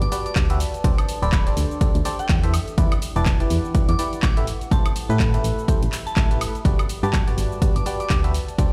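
An overdriven, punchy electronic kick drives this joyful, feel-good piano house excerpt at 124 BPM in G major with a swung 4/4 feel, entering at 0.4 seconds beneath a biting FM electric piano riff with chorus, sidechain pumping and tape echo, a round, dark FM bass with tube saturation, a tape-warm house kit of handclaps, hi-hat, shaker and woodblock, a soft, pure synth bell melody with phaser in the background, and a warbling, nostalgic lo-fi pad, all moving through Gmaj7, D7sus4, Em7 and Am7 in a stone-room ambience.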